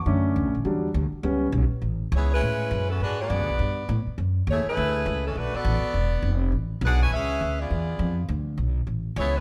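This fragment of energetic big band swing opens with a baby grand piano, natural and up front, taking a short solo over a pizzicato upright bass. The piano steps away at 1.5 seconds, and the bass carries on alone until a saxophone section arrives at 2.2 seconds to take the melody. The bass has a woody, thumpy tone from its gut strings, dark and sitting close in the mix for the whole passage. The saxophones play as a warm jazz ensemble, also placed near the front. Rich extended harmonies such as Bm9, F#m9 and Amaj9 pass by, with an E7b9 steering the phrase home to Amaj9. A moderate large-studio reverb adds a sense of space around the swinging, lively performance.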